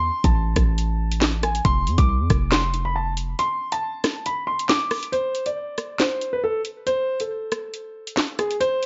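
A mellow, vintage grand piano carries the low-pass-filtered melody up front through this dark, tense half-time drill excerpt at 138 BPM, joined by a punchy, heavy 808-style sine bass with a noise layer that cuts out at 3.3 s, while an electronic drill kit with a knocking kick, sharp snare, metallic hi-hats, handclaps and rim clicks enters at 0.2 s, roughened by gritty 12-bit sampler texture, all set in a light reverb.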